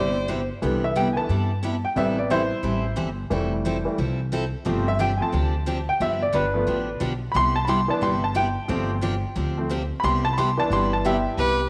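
Cheerful and swinging, this short western swing cut in C major moves at a brisk 178 BPM in 4/4 with a 62% swing on the eighth notes. Fiddle, clarinet and lap steel sound only in brief flashes at the very start, with the bowed fiddle and the raspy, distant clarinet returning together at 11.4 seconds, while the dark, clean lap steel slide is gone by 0.5 seconds. In between, from 0.6 to 11.4 seconds, the upright piano takes a solo, its polished, intimate tone up front with audible action noise, moving through chords such as Cmaj7, Am7, Fmaj7 and G7sus4 before resolving to Cmaj7. A full-bodied, jumbo-sized acoustic guitar picks along underneath, and a woody, thumpy gut-string upright bass drives the low end throughout. A moderate echo chamber reverb gives the studio a roomy sheen.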